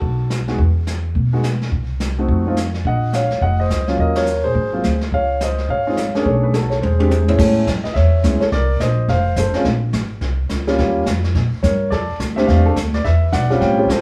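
Heard from a little further back in a small room, with wet studio reverb, this short cut from a longer jazz piano trio swings briskly at 212 BPM in 4/4 while keeping a relaxed feel. An intimate, up-front grand piano carries the melody with audible action noise and long sustain over a woody, thumpy pizzicato upright bass, while a distant, roomy brush kit with a rolled-off top sits behind them. The band hits a shared accent at 4.1 seconds, and a drum fill from 6.8 to 7.4 seconds leads into the second section.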